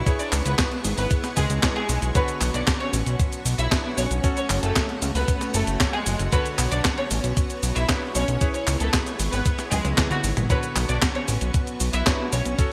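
A steady, straight 4/4 pulse at 115 BPM from a thumpy, tape-warm electronic kick and an up-front 12-bit drum machine with a medium-tuned snare, handclaps, hi-hat, cabasa and gated-reverb toms drives this nostalgic, bittersweet italo disco excerpt in B dorian, where a fat, detuned sawtooth bass sits up front beneath a distant, expressive violin section carrying the melody with vibrato, portamento, delay and shimmer reverb, while a lush string machine holds chorused chords and a clangy electric grand piano adds background stabs over chords cycling through C#m7, Bmadd9 and F#m, with a drum fill at 9.7 seconds, all in a bright 1980s-style digital production.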